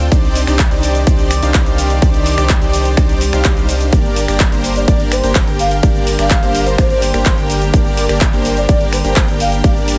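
Festival progressive house in G minor at 126 BPM, this emotional, powerful excerpt pairs huge, detuned supersaw chords, pumping under sidechain with dub echo, against a deep, thick sub bass and a dark, reedy chamber string section held in the background, with the harmony moving from Cmadd9 to Gm at 3.9 seconds. An up-front, punchy overdriven kick drives a layered big-room kit of finger snaps, handclaps, hi-hat and shaker. After a background swell at 3.1 seconds, a breathy, flute-like synth lead with chorus, vibrato, tape colour and dub echo carries the melody from 4.8 seconds, all set in a digital ambience with a rolled-off top.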